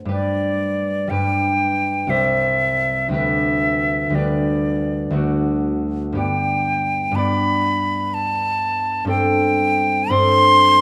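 Fingerpicked, ringing concert harp opens this serene, tender fragment of a romantic duo in G major, joined almost at once by an airy silver flute with soft attacks and vibrato singing the melody up front over the harp's accompaniment, all unfolding in a slow, rubato 3/4 at 60 BPM through chords moving from G to C, D and finally Am7/G, captured by close, detailed microphones with light reverb.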